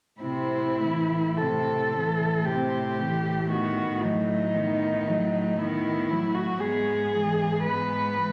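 A wet scoring-stage reverb surrounds four bowed cellos, each a single player sul tasto, in this solemn, elegiac classical fragment in three with a rubato feel. Of two dark cellos, a woody one with vibrato sings the melody up front while the other, smooth-topped and intimate, traces a second line in the background; beneath them, a warm cello with light vibrato and an airy bow supplies accompaniment, and a pure, floating cello holds the bass. All four play together from 0.2 to 8.3 seconds over chords moving from Am to B7/A to E/G#.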